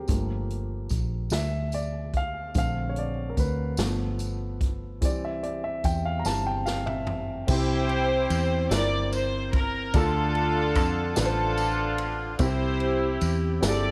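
Hopeful and reverent, this slow gospel excerpt in a straight-feel 6/8 opens with an intimate grand piano solo, its action noise audible, over a foam-muted fingered electric bass, a punchy-kicked big-band drum kit and a distant, jingly tambourine, until a drum fill at 6.3 seconds ushers in a reedy, gut-toned string section with light vibrato that carries the melody from 7.5 seconds, all set in a light small-room reverb.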